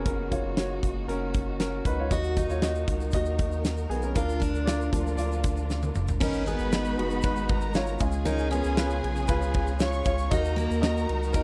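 A dry, close recording in the 1970s studio manner frames this driving, earnest stretch of piano-driven pop in Eb minor, moving at 117 BPM in a straight 4/4 over chords from Gb through Ebm and Bb/D to Abm7 and Db. A clear, polished baby grand leads up front with solo passages throughout, backed by a round, deep analog bass, a huge arena kit with a fat snare and punchy kick, and a bowed studio string section holding smooth-topped chords. A picked jumbo acoustic guitar with fresh strings and finger squeak adds a riff and a grainy tube shaker sits in the background from 2.1 s, and after a drum fill a lush, distant violin section enters at 6.2 s with a vibrato-rich second line.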